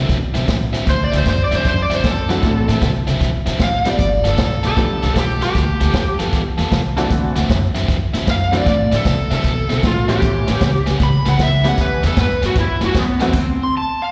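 Rollicking and swaggering, this short cut from a longer electric blues shuffle swings hard in four, captured live through a venue's PA with a light recital-hall reverb around it. A biting overdriven guitar riff and a woody, pizzicato upright bass with bright steel strings open at the start, joined almost at once by a swinging big-band drum kit with a punchy kick, medium-tuned snare, hi-hat and crash. At 0.9 seconds an up-front overdriven slide guitar takes the melody, its bright, fingered tone carrying slapback echo and analog delay. A detuned, jangly honky-tonk upright piano enters at 2.3 seconds with vintage accompaniment, also touched by slapback echo. The band rides dominant ninth chords through the changes before landing on a bare D7 near the end, with the slide guitar ringing on alone until 14.1 seconds.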